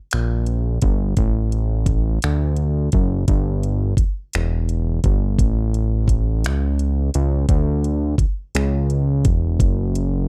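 A fat analog bass and a smooth electronic R&B drum kit enter together at 0.1 seconds, opening this sultry, late-night slow jam in a six-eight metre with a straight feel. The bass sits low, between E1 and D2, with a thick, detuned sawtooth tone, a fast attack and sustained notes shaped by a filter sweep. The drums sound produced and up front, pairing a knocking kick with metallic hi-hats and finger snaps. The bass is equally forward in the mix, and the drums stop at 10.1 seconds, just before the bass. The sound is dry and close, with little reverb, in the manner of a 1970s-style studio recording, and the passage is cut from a longer piece.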